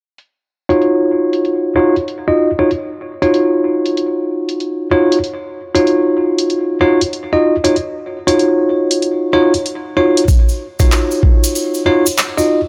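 Swaggering and gritty, this glitch hop excerpt moves at 95 BPM with a 63% 16th-note swing in Eb minor, tuned slightly flat and resting on a single Ebm9 chord. A bell-like, clean tine electric piano sits up front playing sidechain-pumped stabs, run through tape echo and a filter sweep, while an overdriven, layered electronic drum kit with handclaps and bright hi-hats drives underneath. Near 10.3 seconds a compressed, thumpy, pitched-down kick drum lands up front beside a grainy, distant cabasa, the whole mix sitting in a moderate plate reverb.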